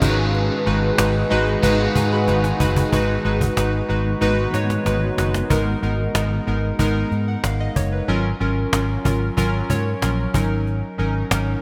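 Moody and urgent, this short 1980s-style pop excerpt moves at a straight, steady pulse, with minor-seventh harmony that later settles into slash chords over a held root. Up-front analog keys carry the accompaniment throughout, their detuned, wave-folded tone shaped by a filter sweep and chorus, and they add a fill early on. Beneath them, a dark, foam-muted fingered electric bass sits round and up front, while a snappy acoustic cajon played with soft hands keeps time and breaks into short drum fills. A compressed, overdriven electric guitar with analog chorus plays only at the opening and stops at 3.4 seconds, and a granular cloud pad hovers blurred and evolving in the background until 5.5 seconds. At 1.3 seconds a fat, very quiet synth brass stab flickers in with phaser and vibrato. A moderate plate reverb and bright digital production give the whole piece a glossy sheen.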